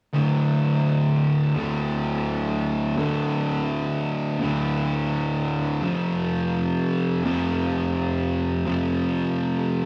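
A fuzz guitar opens at 0.1 s with a dark, distorted riff in D minor, picked low in its range and double-tracked so it sits thick and up front. The metal groove moves at a sludgy, hypnotic 84 BPM in straight 4/4, settling on a D5 power chord before shifting to F5 at 5.8 s. Cut from a longer piece, the rough rehearsal-room recording carries a saturated glow and the close ambience of a small space with moderate reverb.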